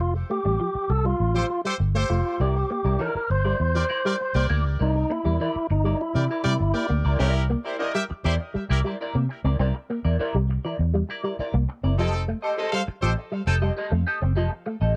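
A straight 4/4 funk groove with a gritty, energetic mood opens on a break, where a fat, overdriven tonewheel organ carries the melody through a fast rotary speaker over a round, foam-muted bass sitting dark and up front, while a twangy envelope-filtered guitar riff with ensemble chorus sits low in the mix. A clear horn section with light vibrato adds a smooth second line through analog delay from 1.4 seconds, and at 2.4 seconds a bright, picked clean guitar joins as accompaniment, colored by wah and phaser, as the chords move from Fadd9 to C9 and later F9. The organ drops out at 6.9 seconds for the second section of this excerpt, all set in a light reverb.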